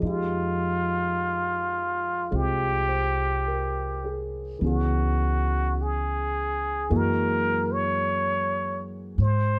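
The recording has a dark, warm production with a light reverb, giving this short excerpt from a longer jazz ballad an intimate, smoky mood. A plunger-muted trumpet carries the melody up front, its clear tone colored by a wah-wah sound, light vibrato and scooped notes, with a plate reverb around it. Underneath, an upright bass with steel strings is played pizzicato, woody and thumpy, sitting close and prominent in the mix. A concert grand piano supplies the accompaniment with deep bass and a warm tone, stopping at 9.2 seconds while the trumpet and bass carry on to the end. The unhurried swing feel moves through Fm9, Dbm7 and Gb9 harmonies.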